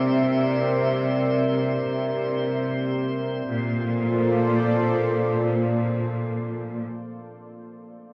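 Ambient music in free time, this short excerpt cut from a longer piece feels serene and peaceful, centred on Bb lydian. A warm analog pad holds sustained chords throughout, its dark, smooth tone blending sawtooth and triangle waves with a sub octave, slow attack, long release and chorus, sitting up front. Beneath it, a chamber cello section carries the bass line in a clear, bowed ensemble voice with even vibrato. For the first 3.5 seconds a drifting glass-harmonics texture floats high above, its glassy sine overtones calm and softened by chorus and their own reverb. The harmony moves from C9 to Bbmaj7 at 3.5 seconds, all bathed in a huge, wet ambient reverb with a long 8.4-second tail.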